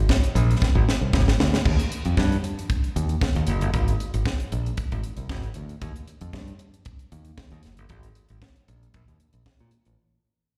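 Disco with a glamorous, joyful mood, this short excerpt from a longer piece pairs a modern fingered electric bass with a tight funk drum kit. The bass sits up front with a bright, direct tone, holding down the low end from Gb1 to Bb2. The acoustic drums are dry and close, with a high-tuned snare, a tight kick, and bright cymbals across the hi-hat and crash, and a drum fill arrives at 0.6 seconds. The sound suggests a live gig heard through the venue's PA, carrying a recital-hall reverb in the room, and the whole passage fades out across its ten seconds.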